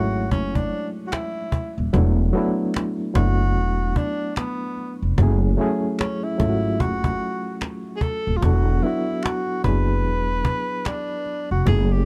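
A dark, dry production frames this melancholic, reflective lo-fi hip hop fragment at 74 BPM, swung in 4/4 and moving between F#m9 and E9sus4 chords. A breathy, whispered tenor saxophone carries the melody with light vibrato and scooped notes over a barky, reedy electric piano that is lightly overdriven, coloured by fast tremolo and cassette tape. Underneath, a thumpy pizzicato upright bass and a woody cajon played with hard hands sit up front, while very quiet, saturated finger snaps enter at 1.1 seconds.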